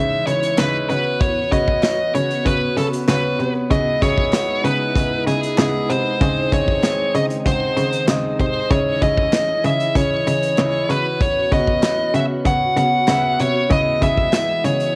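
A dark, overdriven electric lead guitar carries the melody up front in this moody, nostalgic 1980s-style pop piece, cut from a longer work and colored by cassette tape. Beneath it, a polished concert grand piano with audible action noise plays the accompaniment. A glassy FM pad with ensemble chorus and plate reverb holds ethereal chords in the background, while a close, sul tasto cello played by one bowed player supplies the bass with light vibrato. An acoustic studio drum kit with punchy kick, snare, hi-hat and tambourine enters at 0.3 seconds, joined at 0.6 seconds by very quiet, crisp group handclaps, set in a moderate studio reverb.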